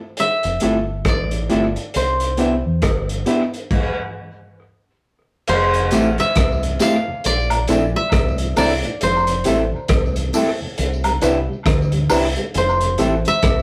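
A swung 68 BPM lovers rock reggae groove in 4/4 carries this smooth, tender excerpt, with a crunchy, dark breakbeat drum kit of punchy kick, hi-hat, rim click and crash and a round, deep dub fingered bass up front, a worn, slightly out-of-tune tine electric piano and slightly broken-up, lo-fi electric guitar stabs from a small old amp beneath a dry, woody koto melody, before the groove breaks into a stop at 3.7 seconds and a very quiet, mellow tonewheel organ with slow rotary speaker joins at 5.7 seconds, followed by tape-echoed tambourine and woodblock, all in a rough rehearsal-room sound.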